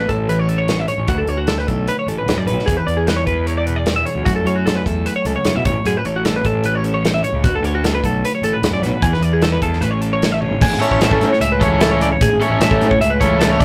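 The excerpt opens with two clean, twangy twelve-string electric guitars, one picking an accompaniment up front while the other spins bright arpeggios above it, over a dark, fuzz-overdriven fingered bass with a round tone. A modern studio drum kit joins at 0.1 seconds, its tight kick, medium-tuned snare, toms, hi-hat and crash cymbals sitting up front in a studio room. This is bright, playful math rock with a midwest emo flavour, moving at 151 BPM in a straight 4/4 in A major, with chords cycling through Amaj7, D6, E7 and F#m7. A drum fill at 10.4 seconds leads into a new section, where a cranked, double-tracked stack guitar enters at 10.8 seconds with an overdriven riff. The whole take has the rough, tube-saturated character of a rehearsal-room recording, touched with light reverb.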